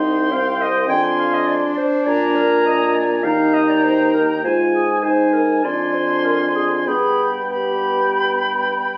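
A distant, pure-toned silver flute carries the melody with expressive vibrato over this stormy, restless passage from a quick classical-period movement for wind quintet, moving in 4/4 at 95-104 BPM with rubato and tuned to A4 = 439 Hz. A warm oboe sings the second line, while a clear French horn and a soft-attacked clarinet supply the accompaniment, the clarinet dropping out at 8.7 s. A mellow bassoon holds the bass as the harmony passes from Cm through Fm, Bb7, Eb and Ab5 to Dm7b5/F and G, and the ensemble, caught on a phone in the room, sits in club reverb with compression.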